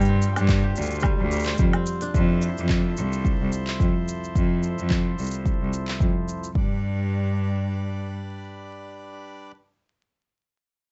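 Folktronica with a warm, pastoral mood and a lightly swung 4/4 feel: a bright, biting bowed cello carries the bass up front with vibrato under reedy accordion chords that pass through a filter sweep between 2.1 and 6.5 seconds, while a fingerpicked, ringing kora with delay and a soft, felt-muted upright piano with audible action noise drift in the background, a deep electronic kick joins the crisp hats, handclaps, shaker and woodblock of an organic electronic kit from 0.5 seconds, and the whole short excerpt sits in a dark, dry production dusted with vinyl crackle.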